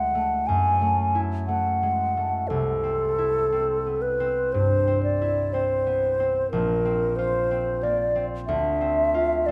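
Impressionist classical duo for flute and harp, pastoral and luminous, moving at a slow, rubato 60 BPM in 4/4 through a short passage cut from a longer piece. A mellow, hollow silver concert flute carries the melody up front with a pure, vibrato-touched, tongued tone, while a bright, ringing concert harp, fingerpicked in its lower and middle register, supplies the accompaniment beneath it. The harmony drifts from F#m7 to Cmaj7, A#sus2 and Dm7, all held in the moderate reverb of a recital hall.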